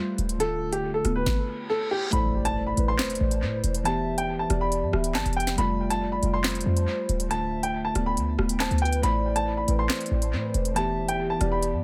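Tense and menacing, this half-time drill excerpt at 139 BPM in A minor sets a clear, woody upright piano melody with audible action noise over muted, dark felt-like synth keys, both soaked in dub echo, while a punchy, tight 808-style bass and a drill kit with knocking kick, sharp snare, crisp hats, handclaps and rim clicks drive underneath. A reverse cymbal rises into an impact at 2.1 seconds, where a hollow, clarinet-like synth lead with vibrato, chorus and phaser enters as a second line over chords moving from Am through Em and Fadd9 to Dm. A very quiet, warbling tape-like pad adds nostalgic lo-fi colour at the start and returns from 9.0 seconds, all within a light-reverb, echo-heavy mix.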